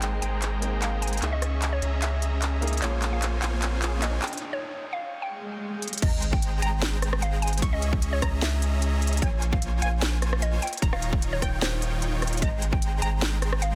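A thick, saturated sub bass anchors this playful, bright future bass cut in a half-time feel, with huge, lush detuned supersaw chords and a woody, warbling FM mallet-like pluck melody each pumping to the sidechain, a polished grand piano in the background until 4.2 s, a trap kit with a sharp snare and crisp hats, and a riser, swell and sub drop running from the build-up into the opening moments of the drop, which arrives at 6.0 s and brings a hard-clipped electronic kick up front and a very quiet, punchy unison pluck arpeggio, set in light reverb with a dense, heavily limited master.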